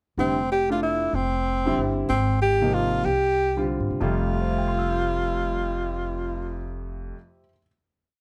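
A clear tenor saxophone leads this short, searching modal jazz piece, shaping a motif-based melody of call phrases with vibrato, soft attacks and scooped notes, close-miked and bathed in plate reverb. It swings briskly in 3/4 at 188 BPM in F major, with a smooth, vintage-toned upright piano comping in syncopated quartal voicings over Fmaj9 and Abmaj9 and a thumpy, woody pizzicato upright bass holding down a two-feel line. After the return to Fmaj9 at 4.0 s the open final chord rings out, the saxophone stopping at 6.7 s and the piano's long sustain carrying on until 7.7 s in a light room.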